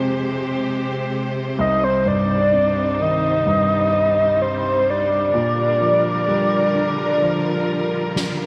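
Heartbroken and emotional, this pop ballad fragment sets a polished grand piano beneath a lush, bowed string section with expressive vibrato and portamento, while a round, octave-layered synth lead with chorus and sub-octave depth carries the melody up front from 1.6 s, inside a wet echo-chamber reverb, as a natural acoustic snare drum fill arrives at 8.2 s.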